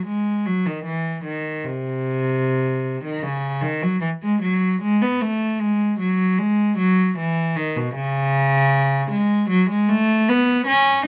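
A single bowed cello with a rich, reedy gut-string tone plays up front and close in light reverb from the start until 11.0 seconds, carrying a radiant, dance-like baroque-style suite movement in C# minor at 76 BPM in 4/4 with a rubato, period-style feel, cut from a longer piece.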